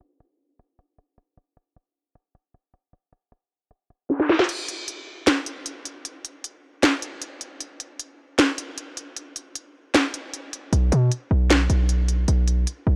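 A half-time trap groove in 4/4 drives this eerie, melancholic hip hop fragment, cut from a longer piece, built on an electronic drum kit of crisp hi-hats, a sharp snare, finger snaps and crash cymbal that sits up front with a tape-warmed edge and breaks into a short fill at 4.1 seconds. At 10.7 seconds a punchy, heavy 808-style bass arrives with a fast attack and decaying sine tone layered with noise, hitting low and loud in the mix. The whole recording is steeped in light reverb and the worn, warbly pitch drift of old cassette tape, dulled by a low-pass filter.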